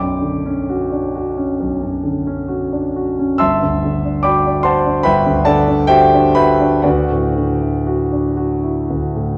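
A concert grand piano, up front with deep bass and long sustain, carries this serene, luminous passage of impressionist classical solo piano, cut from a longer piece and lasting 9.4 seconds. Played rubato in 4/4 at roughly 57-75 BPM, it spans from G1 to E6 and moves through Bmadd9, Gmaj7 and Dadd9 harmonies. A moderate scoring-stage reverb with a 1.7-second tail surrounds the dark, warm production.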